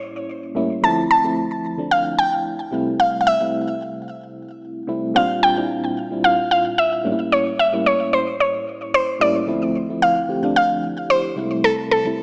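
Amapiano at 111 BPM in D minor, this short, late-night, soulful excerpt sways with a 16th-note swing and is cut from a longer piece. A mallet-like synth pluck carries the melody throughout, woody and round with a percussive, bright edge, its tone shaped by ring modulation and a moving notch and dressed in chorus and digital delay. Beneath it, an FM electric piano with tremolo supplies mellow, vintage accompaniment from low register up through the middle, its fast attack decaying into a noise layer and a phaser sheen. The harmony moves through A7b9, Dm9, C6, Bb6 and back to A7b9 before returning to Dm9 as a new section begins at 9.5 seconds, settling on a rootless Fmaj9 over C. A moderate, lush hall reverb surrounds both parts, while worn cassette tape gives the whole recording a warbly pitch drift and a small-speaker sound.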